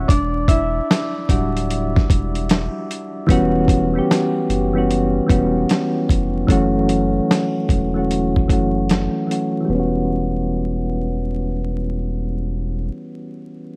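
Nostalgic and hazy, this lo-fi hip hop excerpt at 75 BPM in a swung 4/4 sets mellow, chorused electric-piano-like synth keys with tremolo and a cassette-tape tint, taking a filter sweep from 3.3 to 9.7 seconds, over a deep, round dub sub bass and a gritty, overdriven sampler-style drum kit with a thumpy kick and fat snare that drops out at 9.5 seconds, all under light reverb and vinyl crackle.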